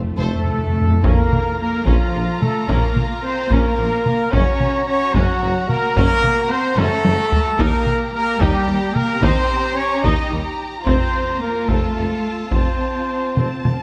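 In a relentless 6/8 at 73 BPM, this epic orchestral film-score excerpt in B-flat harmonic minor opens on a soft-mallet timpani fill over F before up-front, compressed and saturated taiko drums hit with hard sticks from 1.0 seconds, driving alongside prominent trumpet stabs, while a dark, distant violin melody, a smoother second violin line, lush violas, woody cellos, double basses, a mellow tuba and very quiet, vintage-toned French horn chords sit back in light reverb, moving through B-flat minor, G-flat, E-flat and back to F, where the timpani returns at 10.9 seconds.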